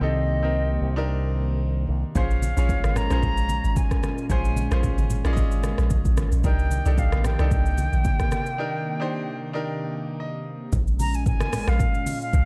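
A distant, mellow silver flute with vibrato and delay carries the melody over brilliant baby grand piano accompaniment and a hollow, airy pad with chorus and sidechain pumping, while a punchy, envelope-filtered fingered bass opens this deep, soulful amapiano excerpt at 112 BPM in Bb dorian, before a round, percussive log drum bass, an afro-pop kit with a deep kick and smooth hats, and damped, low-tuned congas in the background arrive at 2.2 s, moving through a break and a grand piano fill into a drop at 10.7 s, in a dark, dry production.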